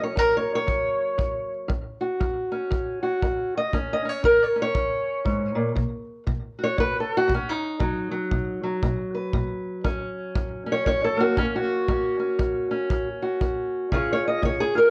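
Soulful and rollicking, this short acoustic country blues excerpt moves at 118 BPM in 4/4 with a swung eighth-note feel, set in F# major. A fingerpicked steel-string parlour guitar carries the melody throughout, sitting up front with a dark, boxy tone and a slapback echo, ranging from F#2 to D#5. A punchy acoustic kick drum, played with brushes, sits lower in the mix beneath the guitar from 0.2 to 14.6 seconds. The harmony moves from F# to B at 5.8 seconds, returns to F#, and lands on C# near the close. The whole take sits in a modest small room and carries the worn, warbling pitch drift of old cassette tape, giving it a weathered, homespun character.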